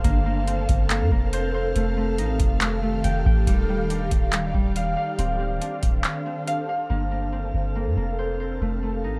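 Melancholic and ethereal, this half-time cloud-rap hip hop fragment in G minor at 140 BPM drifts through Gm11, F9, Ebmaj9 and Dm7 on an airy, detuned pad, treated with ensemble chorus, phaser and sidechain pumping, while a mellow, ringing Celtic harp plays fingerpicked arpeggios through a low-pass filter and digital delay. A round, sine-like 808-style bass and a booming analog drum machine with deep kick, metallic hats and handclaps sit up front, the kick muted from 6.0 s and the drums stopping at 6.6 s. The dry mix carries a worn cassette character with warbly pitch drift.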